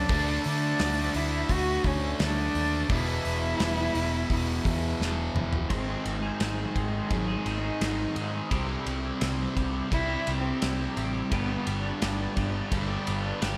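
Restless and bittersweet, this quiet-loud alternative rock passage moves at a straight 86 BPM in 4/4 and sounds cut from a longer piece. A nasal, woody cello carries the melody with vibrato and digital delay, while two bright, fuzz-distorted guitars with slapback echo drive the riff, one up front and the other further back, over a growly, punchy picked electric bass and a loose acoustic indie kit with dusky cymbals and a tight kick. The opening moves between D5 and E5 chords until a drum fill at 5.0 seconds leads into a new section at 5.7 seconds. There the background fuzz guitar stops, a twangy, clean twelve-string electric guitar enters with phaser-tinged arpeggios, and the cello takes a solo over G#, C and G chords before falling silent at 12.5 seconds. A lush hall reverb gives it a big arena sound.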